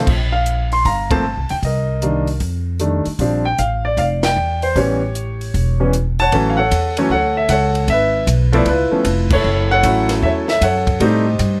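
The grand piano carries the melody up front, with an intimate, natural tone, long sustain and the soft clatter of its action audible, moving between Eb3 and C6. This is a sophisticated, relaxed jazz piano trio at 154 BPM in 4/4, swung on the eighth notes, cut from a longer piece. A pizzicato upright bass with steel strings sits up front as well, woody and warm, holding the low end from E1 to A2. A compact cocktail drum kit, dark and smooth in a small room, adds crash and ride cymbals, hi-hat, a high-tuned snare and a punchy kick, staying lower in the mix. The harmony opens on rich extended chords such as Gm11, Cm9 and F13 before settling into D major at 6.3 seconds, passing through Dmaj9 and C#7alt, and the whole band hits accents together at moments like 1.1 and 9.3 seconds. Close, detailed microphones and very little reverb give the trio a dry, present sound.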